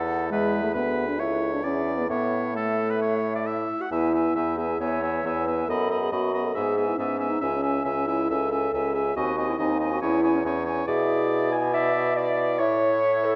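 A warm bassoon sits up front with light vibrato, carrying the bass line in a roomy, distant tone through this quick, lively and graceful classical-period excerpt for wind quintet. Above it, a close-miked oboe sings a clear second line with light vibrato. A dark clarinet supplies accompaniment from further back, and a French horn with light vibrato joins it at 0.3 s. The hollow, pure flute carries the melody with vibrato and tongued notes, yet it stays in the background. The piece moves at 138 BPM in 4/4 with a rubato feel, starting in A major and shifting to E major at 3.9 s, where a new section begins and the harmony passes through C-sharp minor before landing on A near the end at 12.6 s. A wet recital hall reverb and a dark production give the ensemble a resonant glow.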